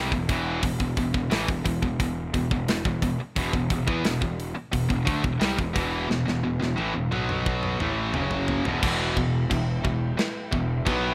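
A straight 4/4 heavy metal groove, cut from a longer piece, pounds ahead on a tight, up-front acoustic drum kit in a big room, with crash cymbals, a tight kick and a medium-tuned snare, and a drum fill starting at 6.1 seconds before the beat drops into half time at 8.8 seconds. A bright, picked distorted guitar riff sits up front over a very quiet, compressed distorted guitar also playing the riff and a growly, fuzz-soaked overdriven bass, all in a relentless, heavy mood. At the half-time shift, a very quiet double-tracked distorted guitar joins, along with a detuned sawtooth pad with chorus, a filter swell and a slow attack in the background, all set in a rough home-demo mix with studio reverb.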